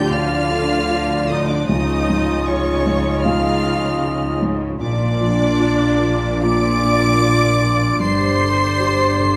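A clear chamber violin section sings an intense, vibrato-laden melody high above this hopeful, uplifting cinematic passage in Bb major at a rubato 76 BPM, cut from a longer piece, while a close-miked oboe, a lush symphonic violin section, a hollow, distant silver flute and a warm clarinet weave second lines, a felt-muted upright piano and a smooth viola section accompany, a dark French horn section holds sustained chords, and rich cello and double bass sections anchor the bass through Dm, Dbadd9, Bb and G5 in a moderate recital hall reverb.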